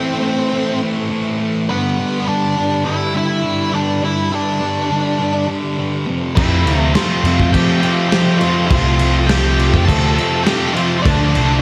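A dark octave-fuzz lead guitar with slapback echo carries the melody over a thick, bright fuzz guitar riff and a swirling, vintage phased string machine in this angsty quiet-loud alternative rock excerpt, and at 6.4 s a growly overdriven picked bass, a loose, muffled indie drum kit with a punchy kick, a very quiet scooped double-tracked high-gain guitar and a background overdriven guitar with slapback echo join in, set in a lush hall reverb for a big arena sound over chords moving from Am through G and F to Dmadd9.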